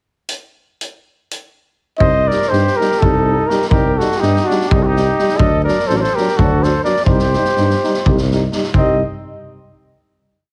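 A street-band drum kit, with a boomy kick, a high-tuned snare and a rolled-off top, opens this fiery, restless Balkan brass band piece in 7/8 at 249 BPM (eighths) with a pickup from 0.3 seconds; then at 2.0 seconds a mellow, close-miked flugelhorn with light vibrato carries the motif-based melody in C dorian sharp4 up front, a trumpet adds a harmony line mostly in thirds, a distant, roomy trombone and a euphonium pulse out chord lines in the background, and a smooth-topped tuba plays root and fifth on the main beats, all under light reverb and a heavily compressed radio sound through to the final chord.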